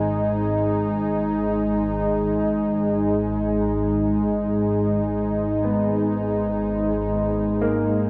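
Dark ambient drone in free time and G# minor, this ominous 8.1-second fragment cut from a longer piece rests on a calm, detuned organ-like sine drone with ensemble chorus and its own reverb, beneath a bright, up-front sawtooth pad that holds sustained chords with a filter swell and chorus, while a worn concert grand piano with deep bass plays delayed arpeggios in the background, the whole mix bathed in a huge ambient reverb and the warbling pitch drift of old cassette tape.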